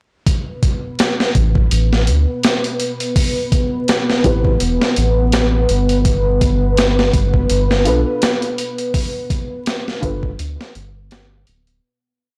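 A blown-out, overdriven recording steeped in vinyl crackle and digital ambience frames this brooding, cinematic trip hop piece at 83 BPM with a swung 16th-note feel. Up front, a gritty, compressed boom bap kit with a thumpy kick and high-tuned snare plays a looped, edited breakbeat. It is joined by a moody, detuned analog pad with chorus holding a high note, and a round, tube-saturated sawtooth-and-sine bass carrying a dub-style line. From 4.2 seconds a felt-muted upright piano adds sparse, echoing rootless chord stabs through harmonic tremolo and tape echo, the harmony settles on G7, and the piece fades out from 8.0 seconds.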